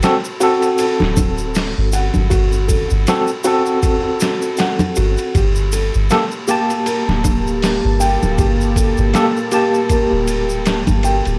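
Trip hop at 79 BPM with a swung 16th feel in G harmonic minor, melancholic and dark, this excerpt moves from D7 to Gmadd9 over a pitched-down, muffled sampler-style drum kit with a thumpy kick, while bright, hard-handed shaker and congas sit close and dry. A worn, slightly out-of-tune tine electric piano with overdrive, tremolo and tape echo carries the accompaniment as a felt-muted upright piano plays soft arpeggios with audible action noise, and a round, sine-like 808-style bass enters at 1.0 seconds up front. At 6.4 seconds a deep, detuned sawtooth pad with chorus and slow attack adds sustained chords, all within a dry, gritty recording marked by transformer saturation and vinyl crackle.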